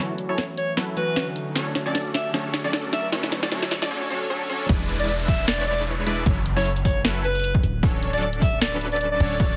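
Heavily compressed, radio-thin sound in a moderate digital room frames this lush, playful future bass excerpt at 153 BPM in half-time with a swung 16th feel in D lydian, where glassy, wave-folded digital keys carrying 12-bit sampler grit, chorus and delay sound together with a filter-swept, detuned sawtooth supersaw stab through the build-up beneath a warm, vibrato-laden alto saxophone melody, while trap drums with a sharp snare and bright hats play a fill and a background riser and downlifter hover; at 4.7 s the drop arrives as the keys stop and a deep, boomy 808-style bass and an overdriven, punchy electronic kick enter, with sidechain pumping on the keys, stab, saxophone and bass.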